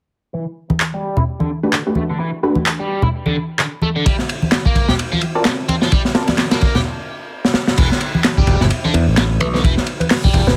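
A heavily compressed, radio-like sound in a small room frames this raw, swaggering breakbeat cut at 129 BPM in E phrygian, with a swung 16th-note feel. A biting, double-tracked overdriven guitar riff opens, run through a filter sweep and tape echo, alongside bright low-tuned congas, dry analog handclaps and a bold, nasal orchestra-hit-like synth stab that is also swept and echoed. The gritty, saturated breakbeat kit with its punchy kick arrives at 4.1 seconds, a short break and drum fill lead into the growly fingered electric bass at 7.8 seconds, and a woody, mallet-like synth pluck with an old-record tint sits in the background at the close.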